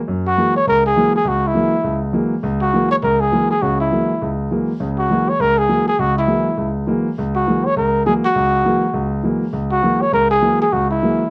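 A brisk swing at 203 BPM in 4/4 carries this searching, hypnotic jazz fragment in F# mixolydian, resting on a single F#9 chord. A breathy, up-front trumpet with light vibrato plays the solo melody from 0.0 to 11.3 seconds, while a warm concert grand piano with deep, natural bass accompanies, also up front. Moderate studio ambience and a dusky, warm production with softened highs give the pair an intimate, enclosed sound.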